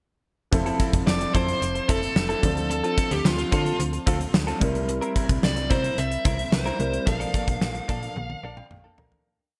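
At 0.5 seconds an uplifting, glossy 1980s-style pop piece in F major opens at 110 BPM in a straight 4/4. A gated drum kit with a fat snare, tight kick and a big, up-front backbeat plays in an airy room, alongside a snappy FM bass with a metallic attack driving eighth notes. A warm baby grand piano holds drop-2 voiced chords with long sustain, and a clean, direct-recorded electric guitar plays a compressed, funk-style rhythm riff through a lush chorus. At 1.1 seconds a dark, overdriven lead guitar enters up front with a picked, motif-based melody trailed by delay. The harmony moves through Fmaj7, Dm7, C7 and Bbmaj7 in one verse under a moderate plate reverb and bright 1980s-style digital production, and from 7.1 seconds the whole piece fades out as drum and piano fills close it.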